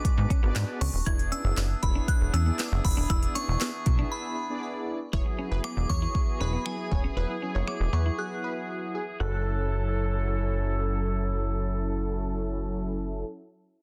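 A glassy, crystalline synth bell carries a high melody in this bittersweet yet confident dance-pop excerpt, floating over mellow, detuned synth brass and a tight, close-miked woodwind section holding sustained chords, both pulsing with sidechain pumping. Up front, a deep house drum kit pairs a deep kick and a woody, softly clipped snare with smooth hats, finger snaps and handclaps, while a punchy, funky analog bass plucks below and a jingly tambourine sits briefly in the background. A clean, twangy electric guitar plays a riff bathed in lush chorus, staying back in the mix until 9.4 s. At 5.1 s a catchy, detuned unison lead with delay joins quietly behind the other parts. Short breaks at 4.1 s and 8.2 s shape the phrasing, and the drums drop out at 7.8 s. The dense, heavily limited master is dry, with its top end softened by a low-pass filter.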